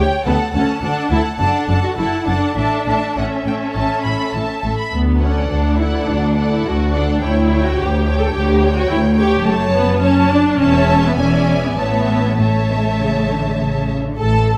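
Lightly reverberant and lush, this cheerful, graceful fragment of a quick classical-period movement for string orchestra sets a rich, focused violin section on the melody with vibrato, a distant second violin line with soft attack, violas carrying the accompaniment with expressive portamento, and smooth, even cellos alongside a close double bass section on the bass, all in a freely rubato 4/4.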